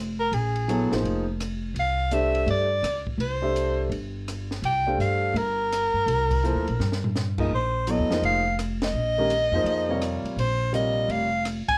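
A breathy soprano saxophone leads this brief cut from a longer modal jazz piece, its whispered, subtone tone carrying vibrato and scooped notes as it solos up front from 0.2 s. The mood is intense yet cool, swinging in 4/4 at 167 BPM over sus chords that shift from Bb9sus4 to C9sus4 and back. A woody, thumpy upright bass with gut strings is plucked close to the ear, while a concert grand piano accompanies with deep bass, long sustain and audible action noise. Set lower in the mix, a compact cocktail kit with dark cymbals, a high-tuned snare and a punchy kick plays a fill at 6.8 s before the band hits an accent at 8.8 s. The whole take sits in a moderate studio room and is colored by worn cassette tape, with a warbly pitch drift.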